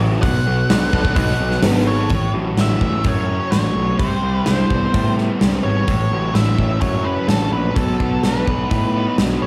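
This rock excerpt in the shoegaze and dream pop vein opens with a double-tracked fuzz guitar riff, compressed and treated with distortion and analog chorus, alongside an overdriven, growly picked electric bass that sits punchy and up front. At 0.2 seconds a gated 80s drum kit comes in with hi-hat, a tight kick and a medium-tuned snare, sounding polished and airy in a bright stone room, while a dark octave-fuzz lead guitar carries the melody from A4 to F#5 through distortion and tape echo. The mood is dreamy and hazy, moving at 127 BPM in a straight 4/4 in A lydian. The harmony shifts from B7 to A6, Cmaj7, back to A6 and then B7, with a new section arriving at 2.1 seconds. A light small-room reverb and studio ambience give the mix a close, present feel.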